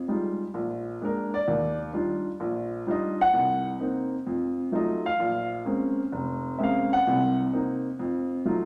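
A warm, woody upright piano carries this short solo jazz excerpt alone from 0.0 to 8.7 seconds, its boxy tone set up front with audible action noise and long sustain lending it an intimate feel. The mood is swinging and moody, moving at 129 BPM in 4/4 with a swung eighth-note feel. The harmony runs through rich extended chords, opening on Fm9 and Bb7 before settling on Ebmaj9, then passing through Cm7b5 and F7b9 to Bbm9 and back around to Cm7b5 and F7b9. The piano spans a broad register from F1 up to Gb5. A wet, large studio reverb with a 1.2-second tail surrounds the instrument, giving the close sound a sense of space as this fragment of a longer piece passes by.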